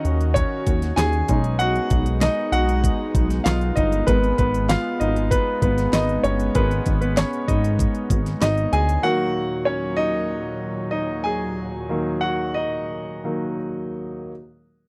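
A clear, polished concert grand piano leads this dramatic, bittersweet piano-driven pop piece, taking a solo across the whole passage with a present, up-front tone, deep bass and short sustain. Beneath it, a smooth, nasal analog pad holds sustained chords with a soft attack and a chorus effect, moving through minor-seventh and added-ninth colours. For the first 9.0 seconds, a glossy, retro synth bass built from detuned pulse and sawtooth waves adds a mellow, plucky low end. An electronic pop drum kit sits up front alongside it, with a knocking kick, a fat snare, crisp hi-hats and handclaps, all with a tape-like tint. At 9.0 seconds the bass and drums drop out, leaving the piano and pad to carry a closing section that slows down until the cut at 14.3 seconds. The sound is dry and close, in the manner of a 1970s studio.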